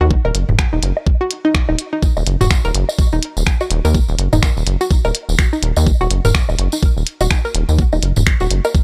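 A swung 4/4 groove at 125 BPM drives this clinical, cool piece of minimal techno in Eb minor, resting on a single Ebm chord. An up-front, knocking electronic kick with layered, tape-colored weight anchors the pulse. Around it sit a minimal click drum kit of finger snaps and clicky hi-hats, re-recorded in a small room, and analog electronic woodblock and toms. Beneath them, a rubbery, bouncy square-wave bass holds the low end prominently, pumping through sidechain compression. Above, a mellow, hollow square pluck plays a riff between Eb4 and Bb4, its detuned, wave-folded tone thickened by chorus, trailed by analog delay and breathing with sidechain pumping. A jingly tambourine slips in quietly at 2.0 s, and the mix stays dry and gritty, with a hardware edge.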